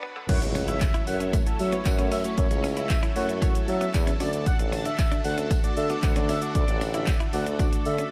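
A punchy analog drum machine drives a straight 115 BPM groove in 4/4, its tape-warm kick up front with handclaps, hi-hat, shaker and crash cymbal, as a brief break gives way at 0.3 seconds to an energetic, driving dance-pop drop in F# minor that moves from F#m7 to D. A clear tuba with light vibrato carries the bass, and it shares sidechain pumping with a deep, mellow chord stab, bright, shimmering string-machine violins and a smooth, expressive sawtooth synth lead that adds tape echo. In the background sit a clean, direct-recorded electric guitar riff with lush chorus, a jingly acoustic tambourine, and an electronic impact that sounds from 0.3 to 2.4 seconds, all under light reverb.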